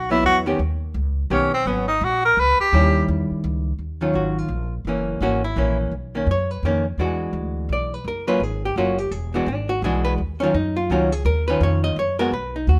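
A bright tenor saxophone with vibrato and a soft attack opens this moody, swinging jazz waltz at 169 BPM, soloing up front until 3.1 seconds over woody pizzicato upright bass and a dark, clean, picked hollow-body archtop guitar that carry on together into Eb minor, moving through chords such as Ebm9, Bmaj9 and E9 in light reverb until the cut at 12.8 seconds.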